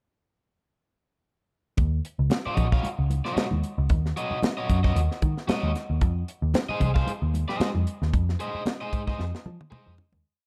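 Hypnotic and funky, this short funk piece sits in 4/4 with a gentle swing on the sixteenths and a dark, warm production under light reverb. The drums, bass and congas arrive together at 1.8 seconds as a breakdown: a tight, dry drum kit up front plays a syncopated groove with ghost notes, a medium-tuned snare and a tight kick. Beside it, a vintage muted picked electric bass, round and amped, drives a syncopated riff anchored on the downbeat, peppered with muted ghost notes. Congas with thick skins and soft hands sit in the background, slapping on two and opening up on four, and at 2.5 seconds a crunchy overdriven guitar joins with bright, clipped funk chords touched by spring reverb. The harmony moves from Ebm7 to Fm7, and the piece begins fading at 8.1 seconds, closing with a drum fill from 9.2 seconds.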